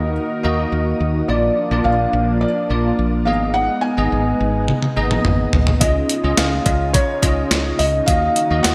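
A soft, felt-muted upright piano carries the melody in this urgent, nostalgic 1980s-style pop excerpt, its audible action noise dressed in lush chorus, shimmer reverb and digital delay. Beneath it sit a bell-like tine electric piano and a round, woody fretless bass up front, while a swirling, phased analog pad stays in the background. A clean 12-bit drum machine with a thumpy kick and gated reverb enters with a fill at 4.7 seconds, a very quiet metallic cowbell joins at 5.8 seconds, and a moderate hall reverb frames the bright production.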